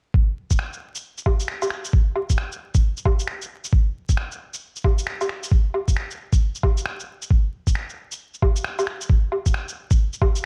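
Vinyl crackle and light digital ambience hang over this nocturnal, ghostly future garage excerpt in swung 4/4, where an up-front, muffled, pitched-down electronic kick thumps from 0.1 seconds and a compressed, tape-warm, sampler-style layer of electronic shaker, finger snaps and woodblock joins at 0.5 seconds, both set in studio reverb.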